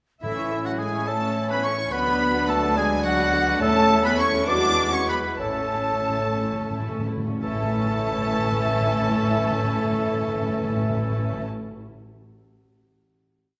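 A rich violin section sings the graceful melody of this cheerful, quick classical-period orchestral movement in 6/8 and A major at 56-71 BPM, joined by a second, very quiet violin section, an airy flute ensemble in unison and thirds, and a close-miked oboe at the octave, while clear violas rock a two-note figure in the background, a mellow bassoon adds a distant counter-melody, horns hold roomy chords, cellos double the tune at the octave above sustained double basses, and round soft-mallet timpani strike single bass notes before a fill from 5.4 s as the tempo slows into a final chord at 7.4 s in a reverberant recital hall.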